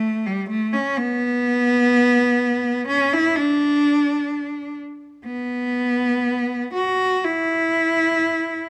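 Close, detailed microphones and a light reverb frame this lyrical, serene classical fragment, where a single clear, focused cello plays alone, bowed with vibrato and placed up front, moving freely in rubato from 0.0 to 8.7 seconds within a compact range from G3 to F#4.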